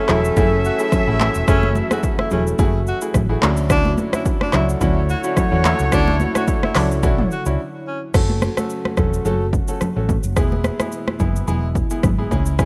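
An overdriven deep house drum kit with a punchy kick sits up front, driving this sultry, hypnotic afrobeats excerpt in F# minor at 108 BPM with a light 16th-note swing, as round, dark hollow-body electric bass and ringing, high-tuned congas in the background fill out the groove. A clear tenor saxophone with light vibrato and delay carries the melody over a punchy horn section and natural baby grand piano, with a very quiet, mellow analog pad sustaining F#m9 and Dmaj9 chords underneath. The horns drop out at 7.5 seconds and the sax at 8.0 seconds, and after a brief break the rhythm section, piano and pad continue over F#m and E in a rough home demo mix with small room ambience.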